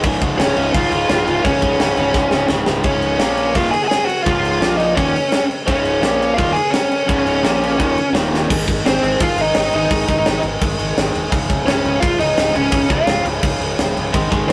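Driven by a straight, pounding 4/4 on a tight metal drum kit with bright cymbals, a high-tuned snare and a tight kick sitting up front, this rowdy, rebellious punk rock excerpt hits with a drum fill around 2.1 seconds. Two bright, picked rhythm guitars churn out the riff in the background, a crunchy overdriven one that drops out at 8.5 seconds and snaps back near the end, and a distorted electric one, while a round fretless electric bass rumbles underneath. From 0.4 seconds a dark, bluesy overdriven lead guitar with distortion and delay carries the melody on top, all caught in a rough rehearsal-room sound with warm saturation and moderate reverb.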